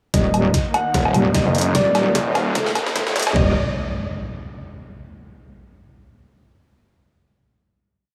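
Heavy wobble dubstep, menacing and aggressive, runs at 149 BPM in a half-time 4/4 feel with a light swing on the sixteenths, set in Eb harmonic minor and tuned to A4 = 436 Hz. Across this brief whole piece, a felt-muted upright piano carries a repeating riff melody, soft and intimate with audible action noise, shaded by a low-pass filter and dub echo. Very quiet supersaw chords hold a lush sustained pad beneath it. The metallic wobble bass sits up front, an FM tone with chorus and saturation whose modulated phrases change their wobble speed, and a snarling, detuned sawtooth bass joins at 0.9 seconds with distorted, chopped phrases that answer it. The dubstep drum kit brings a huge snare, bright closed hats and a low woodblock, overdriven and re-recorded in a small room, while a knocking electronic kick drives the half-time beat and a drum fill runs through the build. Filter sweeps on the piano and supersaw shape that build, a background riser and impact arrives at 1.9 seconds, and a final chord takes over from 3.4 seconds in light small-room reverb.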